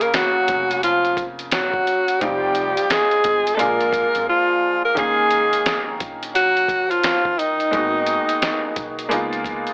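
A breathy alto saxophone sits up front with subtone, vibrato and scooped notes, carrying the melody of this smoky, mellow jazz-hop excerpt at 87 BPM in Eb minor with a swung 16th-note feel. Beneath it, a veiled cup-muted trombone plays a soft second line, a worn, slightly detuned upright piano supplies the chords, and a pizzicato upright bass enters at 0.5 seconds, dark and in the background. A thumpy, fat-snared sampler-style drum kit with tape-warm grit drops out from 4.3 to 5.0 seconds, and the whole recording has a dry, gritty AM-radio character with light reverb.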